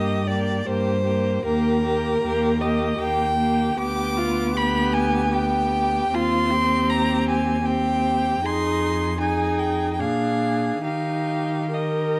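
A string quartet begins together in a slow, lyrical classical movement in 3/4, its uneven beats eased by rubato. A clear, close first violin sings the melody up front with vibrato, a dark, woody second violin holds a distant inner line, and the viola adds smooth, even accompaniment, while underneath the cello plays the bass sul tasto with an airy bow, soft attack and light vibrato, intimate and close. Light reverb and a warm production surround this fragment of a longer piece.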